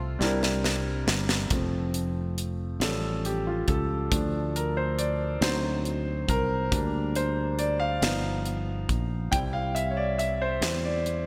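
This slow gospel piece in a straight 6/8 feels reverent yet jubilant, and it is cut from a longer performance. A crisp fusion drum kit opens with a fill at 0.2 seconds, its high-tuned snare and punchy kick sounding airy and polished in a studio room. At 1.5 seconds the clear concert grand piano takes a solo that runs to the end, its open tone and deep bass carrying long sustain over rich changes such as C9, A7b13, D7b9 and G7alt before settling on C. Beneath it, a fingered electric bass holds down the low end with a round, direct sound, while piano, bass and drums all sit up front. A lush hall reverb and bright 1980s-style digital production give the recording a gleaming, spacious finish.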